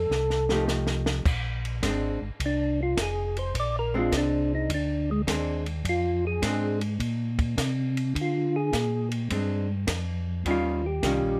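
A swung 104 BPM groove in 4/4 sets this swinging, soulful soul jazz organ trio fragment in Bb mixolydian, as a compact cocktail drum kit, dry with dark cymbals, a high-tuned snare and a punchy kick, plays a fill from 0.1 seconds. A round, mellow tonewheel organ bass with slow rotary speaker and chorus vibrato holds the low end, and a clean, picked hollow-body archtop guitar comps from 0.5 seconds over F9, Bb9 and Eb9 chords. From 1.3 seconds the percussive lead organ takes a solo, its key click and third harmonic percussion shaded by slow rotary, chorus vibrato and plate reverb, all within a light room ambience.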